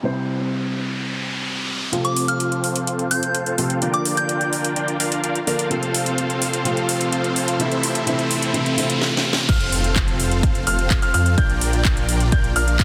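An uplifting, triumphant festival progressive house excerpt opens on a dark, boxy concert grand piano pumping under dub echo beside a background riser, then at 1.9 s a huge, thick supersaw riff with tape colour and a filter sweep drives a build-up alongside a cracking-snare house kit and a brief soft, chorused FM bell melody, until the drop lands at 9.5 s with an impact, a brilliant baby grand arpeggio, a menacing detuned saw bass and a punchy up-front kick, set in a long ambient reverb.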